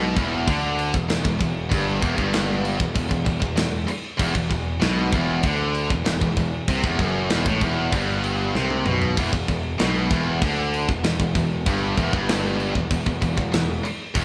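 Aggressive and dark, this heavy metal excerpt at 96 BPM in E minor pairs a bright, high-gain heavy guitar with an overdriven electric guitar sitting in the background, both riffing low from E2 to D3 over a growly, punchy fuzz bass, while a tight, up-front acoustic drum kit with crash, kick, snare and toms joins at 0.2 seconds and drives a fill from 8.6 seconds into the next section at 9.2 seconds, all captured as a band playing live in one large studio room with moderate reverb.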